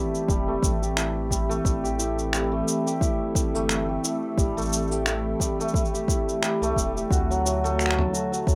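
Delicate and autumnal, this 8.6-second folktronica excerpt moves at 88 BPM in A dorian with a light 16th-note swing, as an up-front, shimmering hammered dulcimer plays arpeggios through a low-pass filter and delay over a warbling, detuned tape-like pad with chorus and reverb holding sustained chords, a round sine sub bass, an overdriven electronic kick, and a muffled, pitched-down sampler kit of finger snaps, shaker and toms, all in a rough home-demo mix with light reverb as the harmony shifts from Am7 to D at 7.1 seconds.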